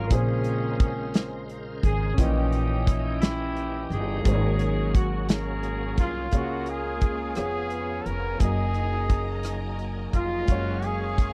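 A slow 6/8 gospel sway at 58 BPM in dotted quarters, set in Db major, rides on a punchy, up-front country drum kit of kick, snare, rim click and hi-hat from 0.1 seconds, with a woody pizzicato upright bass and a natural grand piano underneath. A mellow horn section with a soft attack carries the reverent melody over a shouting tonewheel organ in the background, lightly overdriven through a fast rotary speaker with chorus vibrato; a clear, close-miked trumpet joins the melody at 6.0 seconds and a bowed studio string section with expressive portamento enters at 6.3 seconds. The dry, close 1970s-style studio sound gives this uplifting fragment of a longer piece an intimate feel as the harmony moves from Bbm9 to Db6 at the start of the second section.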